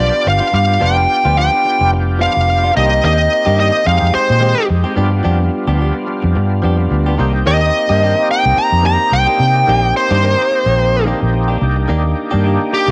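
Lightly reverberant, this soulful, smoky blues cut from a longer piece swings in 4/4, with a smooth, bright overdriven lead guitar up front over a round, punchy, foam-muted electric bass. A gritty tonewheel organ with key click, chorus vibrato and a slow rotary speaker fills in the harmony, while a twangy, compressed clean guitar recorded direct adds slapback-echoed stabs. From 7.2 s the lead guitar takes a solo over a Cm9 chord.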